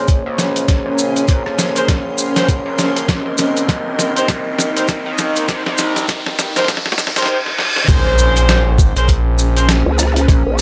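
A dark, moody analog pad, tight jazz-style horn stabs, a gritty, aggressive synth bass and a cloudy granular pad open this funky, swaggering glitch hop excerpt at 100 BPM in Bb dorian, soon joined by a pitched-down boom bap sampler kit, a thumpy up-front kick and close, dry maracas over a swung groove, as an electronic riser and reverse cymbal build from 2.6 seconds toward a drop at 7.9 seconds, where an impact lands and a nasal vowel-sweep wobble bass bursts in at 9.9 seconds.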